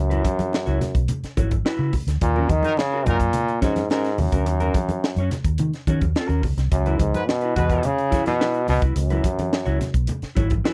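A straight 4/4 funk groove at 107 BPM sets up this hypnotic cut in C# dorian. It is driven by a dry drum kit sitting up front, with hi-hat, a tight kick and a high-tuned snare. A dark, round, foam-muted fingered electric bass, amped and punchy, anchors the low end, while thick-skinned, medium-tuned congas murmur in the background. A clean, mellow electric guitar played with the fingers supplies accompaniment as the chords move from C#m11 to D#m7 and then C#m7. A bright, forceful trombone carries the melody in a jazz style with light vibrato, sounding distant and roomy yet prominent. A warm, pop-style horn section adds a brief second line at 2.6 and 7.1 seconds, all captured in a close, 1970s-style studio sound with little reverb.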